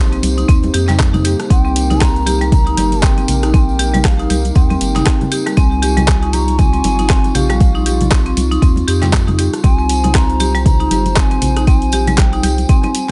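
Spiritual and hypnotic, this afro house excerpt rides a swung groove: an up-front deep electronic kick and layered, tape-warm deep house kit of handclaps, hi-hat and rim click sit among soft-handed congas and a distant, jingly tambourine, while a round analog bass pumps beneath a moody, detuned pad and woody hard-mallet marimba arpeggios echo with digital delay. A breathy, bright bass bansuri joins at 1.5 seconds with vibrato and its own delay, and the harmony moves from Cm7 to Dbadd9 at 5.6 seconds.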